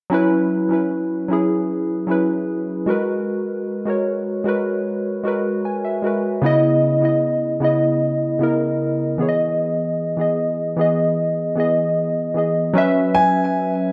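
A straight, unhurried 4/4 pulse at 76 BPM sets the pace for this late-night, longing R&B excerpt, tuned slightly flat at A4 = 439 Hz. Analog synth keys carry the accompaniment from the start, their detuned square and sawtooth tones given a round, mellow character with a filter sweep, fast attack, decaying notes and a chorus effect, sitting up front. The harmony moves through F#7sus4, G#m9, C#m9 and Emaj7 before returning to F#7sus4 for a brief closing passage, and the keys add a short fill at 5.2 seconds. At 13.1 seconds a dark concert grand piano enters with a single melodic G#5, its deep, boxy tone with long sustain colored by a digital delay. A wet plate reverb with a 2.7-second decay bathes the recording in a lingering space.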